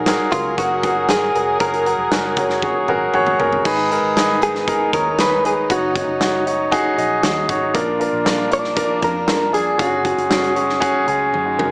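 Heard through a small-speaker sound with moderate room reverb, this bittersweet, earnest piano-driven pop excerpt is carried by a clear, up-front concert grand with deep bass and audible action noise, alongside a bright, compressed clean electric guitar melody through plate reverb that ends at 10.5 seconds, a distant, floating string section holding very quiet sustained chords, a dark, round foam-muted bass in the background, and a huge big-room arena drum kit with a punchy kick that plays fills at 2.6 and 11.3 seconds around a brief piano fill at 7.0 seconds.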